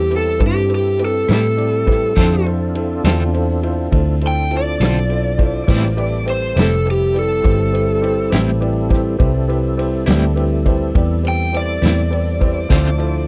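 A brooding, mournful slow blues in A minor at 68 BPM in 12/8 opens at once on an overdriven slide guitar solo, played with fingerpicks and sitting up front, over a dark, worn grand piano with audible action noise, a clear tonewheel organ with key click, slow rotary speaker and chorus vibrato, and a round, foam-muted fingered bass, with a natural small-room drum kit of punchy kick, medium-tuned snare and ride cymbal arriving at 0.1 seconds. At 1.3 seconds a twangy, slightly broken-up picked electric guitar with tremolo joins the accompaniment as the harmony moves between Am7 and Dm7. The sound is dry and close, in a 1970s studio style, and the excerpt is cut from a longer piece.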